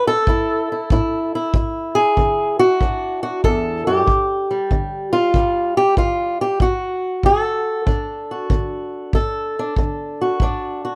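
Soulful and gritty, this short acoustic country blues cut moves at 95 BPM in D major with a loose swing feel, taken from a longer piece. A boxy, up-front fingerpicked steel-string guitar carries the melody from the first moment, finger squeaks audible and a touch of plate reverb around it. A punchy, natural-sounding kick drum with brushes joins at 0.3 seconds, all set in a small booth with moderate ambience.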